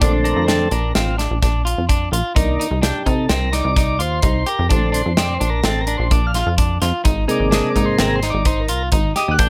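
A tonewheel organ takes the lead from the first second, its smooth, clean tone turning through a slow rotary speaker over a bright, driving progressive groove in 5/4 at 128 BPM in Bb major. A plucky analog bass with a punchy, funky filter snap sits up front beside a modern studio drum kit of punchy kick, medium-tuned snare and hi-hat. A picked electric guitar, just at the edge of break-up, weaves arpeggios through chords moving from Bbmaj7 to Cm7, back to Bbmaj7 and on to Abadd9 in a small room, all in a 9.5-second cut from a longer piece.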